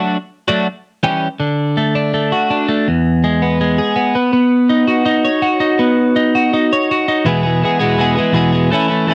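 A home cassette recording with moderate studio reverb captures this short, carefree rock fragment at 164 BPM, where a lone twelve-string electric guitar, bright, jangly, clean and compressed, sits up front as it moves from F#m and Em6 through D, E and Badd9 before landing back on E at 7.3 seconds.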